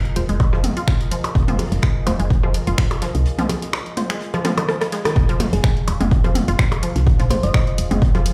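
A deep, moody ambient pad opens this excerpt of quirky, sparse minimal techno in F minor, sitting in the background with chorus, its own reverb and sidechain pumping, while the rest of the groove arrives almost at once at 126 BPM in 4/4 with a light 16th-note swing. An overdriven, punchy electronic kick sits up front beside a round, woody FM bass that also pumps against the sidechain. An analog drum machine adds gritty finger snaps, hi-hat and rim click, joined by overdriven electronic percussion blips and toms with delay and a very quiet acoustic soul kit of hi-hat and snare with a rolled-off top. A juicy, squelchy resonant blip pluck carries the riff through chorus, delay and 12-bit sampler crunch, and a muted, filtered dub chord stab drifts in the background with chorus and delay until it stops at 4.0 seconds. A drum fill and a band accent lead into the drop, where a gentle, tine-like thumb-piano-style synth pluck enters at 5.5 seconds with chorus and delay. 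The mix carries little reverb, heard as if played on a big sound system in a bare room.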